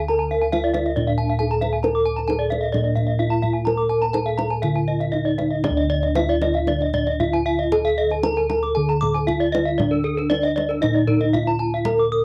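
A home cassette recording with light reverb captures this brief cut from a longer Balinese gamelan piece in D pelog, with a brilliant, shimmering mood in a straight 4/4 that moves between 116 and 137 BPM. The bronze metallophones carry a cassette-tape coloring, and their paired tuning sets up the shimmering beats that define the ensemble's sound. One metallophone, struck with padded disc mallets, plays the melody in a mellow, dark, smooth voice. Two more, played with horn mallets, play bright, ringing arpeggios above it, one of them with an airy edge. Beneath them, the bossed gongs take the bass, close-miked, dry and up front, with a round, full, beating tone from their padded beaters. A deep kendang enters at 0.3 seconds with a small-room acoustic feel, and the piece passes into a second section at 5.6 seconds before the cut ends around 12.2 seconds.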